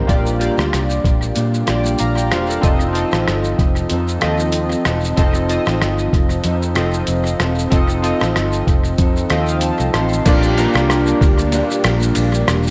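An echo-heavy, lightly reverberant mix with a digital ambience frames this nostalgic, dreamy bedroom-pop excerpt in Bb major at 94 BPM, its 4/4 groove carrying a gentle swing on the sixteenths. Up front, glossy, warbling retro synth keys with cassette-tape grit and tape echo sit beside muffled, pitched-down sampler drums with a thumpy kick, rim click, shaker, hi-hat, ride and crash. A dark, foam-muted, round bass anchors them, and a slightly broken-up guitar through a small old amp drifts in the background with subtle chorus and warbly pitch. The keys play a fill from 9.0 to 10.3 seconds, and at 11.1 seconds a very quiet, thick, detuned unison pad enters with slow-attack sustained chords.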